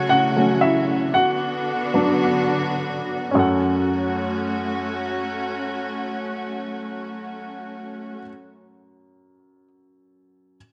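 A driving, dramatic pop piece in F# minor and 4/4, moving at 102-118 BPM with a lightly swung sixteenth-note feel, slowing down through its opening as a woody, up-front upright piano carries a featured solo passage over chords from F#m/C# to Bm/D, arriving on F#m at 3.4 seconds. A close, intimate string section holds bowed, sustained chords with vibrato, soft attacks, a sul tasto touch and a smooth top end, stopping at 8.2 seconds while the piano accompaniment carries on until 10.6 seconds. A moderate echo chamber reverb and studio ambience surround this fragment of a longer work.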